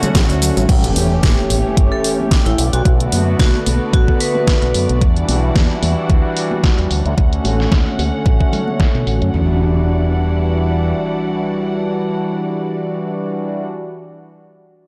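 The groove runs at 111 BPM in 4/4 with a 55% swing on the sixteenths, an up-front, knocking electronic kick with overdrive anchoring this sensual, sleek nu-disco fragment in E dorian, alongside an overdriven pop kit with a deep snare, hi-hat, shaker and crash, plus very quiet, high-tuned congas that drop out around 8.8 seconds. A fingered electric bass, bright and direct with an envelope filter and tube saturation, carries the low end until 10.9 seconds, while a warm, warbling analog pad with chorus, tape echo and sidechain pumping sits up front through the whole cut. A dark, woody violin section holds lush bowed chords with vibrato, roughened by 12-bit sampler grit and sidechain pumping, and a filter sweep runs across it from 0.7 to 9.3 seconds. A very quiet, round analog pluck flickers only at the very start, and a hard-mallet vibraphone with slow motor vibrato and analog delay rings out a short melody between 1.9 and 5.0 seconds. 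Background electronic impacts mark the opening and the closing stretch as the chords move from Dmaj7 through A7, Bm7 and Em9. The mix is dry and gritty, with light reverb and transformer saturation.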